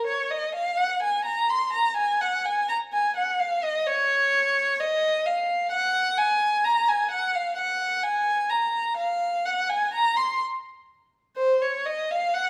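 Flowing and grave, this 12.5-second fragment of a baroque-style suite movement in Bb minor, tuned to A4 = 441 Hz, has a single bowed violin playing alone in a rubato 3/4 at 64 BPM, its rich, expressive line sung between C5 and C6 with vibrato and portamento, heard from further back in a stone room whose wet reverb of about 1.2 seconds lends it a distant glow.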